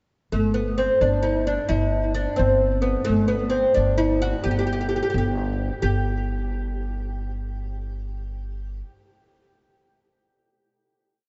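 Persian modal ensemble music in a festive, stately 6/8, this short whole piece sets an up-front, woody, plectrum-plucked fretless oud with double strings and tape echo, playing an ornamented modal melody, over a growly pizzicato upright bass holding a simple root-and-fifth line on steel strings, both entering at 0.3 seconds before settling on a long final note from 5.8 seconds, in a dreamy, dark-toned mix steeped in cathedral reverb.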